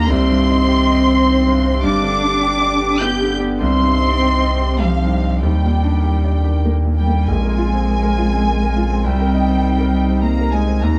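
A neoclassical piece for piano and strings in C minor, reflective and longing, moving at 101 BPM in a rubato 3/4, heard as a short excerpt from a longer work. A muted studio violin section carries the melody high in its range, its veiled, con sordino tone softened by vibrato and a gentle attack, while a single muted cello sings a second line below with portamento slides and a distant, shadowed color. A bright grand piano with short, brilliant sustain provides the accompaniment, and a punchy sub bass with a pitch-drop attack sits up front underneath. Very quietly in the background, a chorused pulse-width pad holds shimmering, retro sustained chords, and a marimba played with soft mallets on rosewood bars adds woody, airy arpeggios from 0.1 to 10.9 seconds. The harmony moves from Cm through G and Ebmaj7 before a new section arrives at 7.3 seconds on Bbsus2, settling onto Cm7, all within light reverb and a small room ambience.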